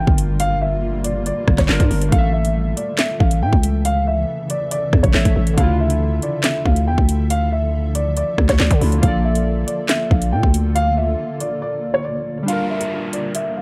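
A dark, digitally ambient production with a cold, ominous mood opens this drill excerpt at 139 BPM in a half-time feel, set in D harmonic minor. An electronic impact marks the start. The up-front drill kit arrives at 0.1 seconds with a hard-clipped kick, sharp snare, metallic hi-hats, handclaps and rim clicks, while a growling, buzzy 808-style bass with a fast attack drives the low end until 11.2 seconds. A mellow, boxy concert grand piano carries the melody high in its register, its action noise audible and its tone softened by a low-pass filter. Beneath it, warbling lo-fi synth keys with a nostalgic, vintage edge add chorus-tinged accompaniment, and a cloudy, evolving granular pad holds blurred, detuned chords bathed in its own reverb across the progression from Gm7 through A, Dmadd9 and Bbmaj7. After a break at 11.6 seconds, a downlifter ushers in a brief closing section at 12.5 seconds that returns to Gm7.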